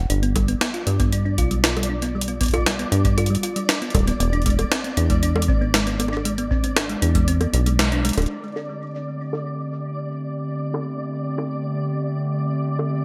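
A bright, 1980s-style digital production with a moderate plate reverb frames this glitchy, melancholic IDM fragment, cut from a longer piece and moving at 117 BPM in a straight 4/4 in A minor. Up front, a rubbery, resonant acid bass with a saturated sawtooth edge sits low beneath a round, tine-like FM pluck that spins gentle arpeggios through chorus and delay over G7 and E7b13 chords. A gritty, pitched-up jungle sampler-style kit of bongos, hi-hat, snare and crash runs the whole way, its compressed hits filtered and washed in gated reverb and delay, while a deep, tape-warm analog kick pulses beneath until it drops out at 7.3 seconds. After a band accent at 7.8 seconds, the bass and pluck stop at 8.3 seconds and a warbling, nostalgic pad takes over on an Am11 chord, its detuned, wave-folded lo-fi tone pumping against the sidechain as a filter sweeps across the drums. Throughout, a faint, flickering granular texture glimmers high in the background.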